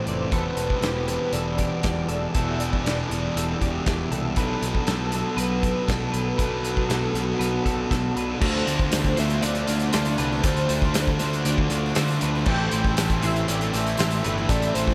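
A straight 4/4 pulse from a loose indie drum kit drives this brooding, dreamy shoegaze and dream pop excerpt, with a punchy kick, medium-tuned snare, dark cymbals and a pumping room sound placed up front. Underneath, a round, punchy fuzz picked electric bass carries the low end with overdrive, while a thick fuzz guitar with distortion and subtle chorus and a biting overdriven guitar with reverse reverb grind out riffs in the background. A bright, clean electric guitar picks arpeggios through analog chorus and tape echo, and a velvety synth lead built from detuned sawtooth and triangle tones sings a sustained, soft-attack melody with chorus and tape echo on top. At 8.4 seconds the harmony moves from Em7 and Bm7 to Dm7 and Am, and a very quiet, double-tracked overdriven electric guitar joins with another riff, followed at 8.7 seconds by a jingly, close and dry tambourine. The whole mix is soaked in a huge ambient reverb that blurs the layers into a hazy wash.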